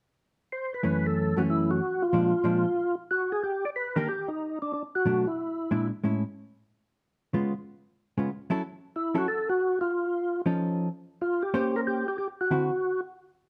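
The swing feel runs at 185 BPM in 4/4, with a moderate lilt to the eighth notes, in this bluesy, soulful jazz excerpt cut from a longer piece. A percussive tonewheel organ carries the melody between D4 and D5, its full, lightly overdriven voice colored by chorus vibrato, second-harmonic percussion and a slowly turning rotary speaker; it plays from 0.5 to 5.9 seconds, drops out, then returns at 9.0 seconds. Beneath it, a dark, clean hollow-body electric guitar, fingered and compressed, supplies accompaniment from 0.8 to 12.7 seconds across a range from F#2 to C5. Both parts sit up front in a moderate studio reverb. The harmony moves from F#m7 through chords such as D#maj7, Amaj7 and Faug7, then shifts into a brief second section on Bbm69 and D9.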